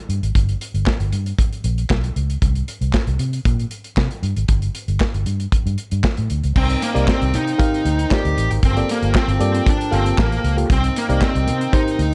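An overdriven, dark lead guitar carries the melody up front from 6.6 seconds, arriving over a foam-muted, round electric bass and a tight, small-room drum kit with handclaps, crash, hi-hat and a medium-tuned snare that drive this funky, danceable early-eighties boogie funk excerpt at 116 BPM. The opening bars move through Gm and C5 before a brief chordless passage, then the second section shifts to Cm9 and Gm9 harmonies as a mellow FM electric piano with a fast, decaying attack and a reedy, breathing pedal harmonium in the background fill out the sound. Light reverb and studio ambience give the dark-toned mix a close, smooth feel.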